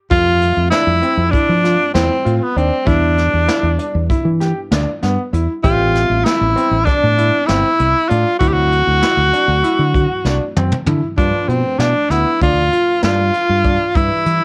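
From 0.1 seconds the full band enters together in this bright, driving progressive instrumental, cut from a longer piece and moving in an uneven 9/8 at 195 BPM counted in eighths, with a straight feel in G mixolydian. Up front, a breathy tenor saxophone carries the solo melody in a whispered, intimate jazz style, with a soft attack, vibrato and scooped notes. A dark, round fingered electric bass sits just as present, punchy and direct, while a brush-played drum kit, with its medium-tuned snare and boomy kick, sounds natural in a studio room. A clear grand piano plays short-sustained arpeggios with a vintage cassette-tape colour, and a bell-like tine electric piano adds very quiet, clean accompaniment underneath. The harmony moves through Fmaj7, Em7, Am7 and D7, a drum fill runs from 10.3 seconds, and at 11.2 seconds a new section lands on G7, all captured dry in a home recording on cassette.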